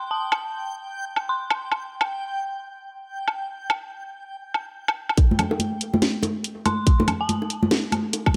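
Dark and heavy, this deep dubstep excerpt moves with a half-time, swung feel. It opens on an eerie, warbling detuned synth bell with a vintage FM character, filtered and chorused and trailed by dub echo, drifting over a reversed, granular swelling texture that glows with its own reverb. A garage drum kit enters at 0.3 seconds, its cracking snare, bright hats and woodblock sitting up front. At 5.2 seconds the texture falls away and a build-up begins as a tight, layered electronic kick enters up front beneath the kit. Ringing bongos and congas join at the same moment, played with soft hands in a small room and echoed in dub fashion. The bell returns briefly near 6.7 seconds, all set in light reverb.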